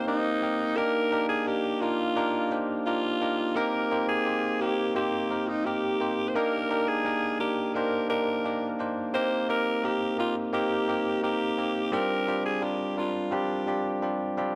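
A bell-like tine electric piano and a breathy alto saxophone open this moody, urgent pop excerpt together, set in C minor at 86 BPM in a straight 4/4. The electric piano holds the accompaniment, clean and direct, sitting up front as it moves through Cm7, Ebmaj7 and back, before landing on a G7sus4 near the end. Out front, the saxophone carries the solo melody in a pop style, its tone raspy and gritty with a punchy attack, vibrato and scooped notes. A lush hall reverb gives the pair a roomy, moody glow. The saxophone stops at 14.0 seconds, and the electric piano rings on briefly until the cut at 14.6 seconds.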